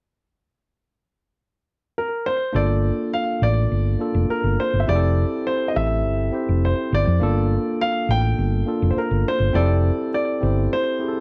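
A dry, close 1970s-style studio sound frames this smooth, romantic slice of lush soul at 103 BPM, where a baby grand piano with short sustain and slapback echo carries the melody from 2.0 seconds, joined at 2.5 seconds by a bright, clean tine electric piano and a round, punchy hollow-body bass sitting dark and up front as the harmony moves between Gm9 and Fmaj9.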